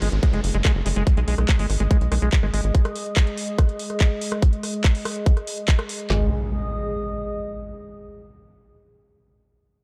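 A driving 143 BPM pulse anchors this hypnotic, intense psychedelic trance excerpt, where an up-front drum and bass kit with a tight kick, woody snare and handclaps layers over a second kit of metallic hats and rim clicks, a punchy sawtooth sequencer bass and a squelchy, resonant acid riff that pumps through chorus and delay run until about 2.7 seconds, a warbly, nostalgic lo-fi pad drifts in at 0.5 seconds with ring-modulated shimmer, and the drums drop out at 6.1 seconds as a downlifter and impact close the darkly produced, lightly reverberant passage.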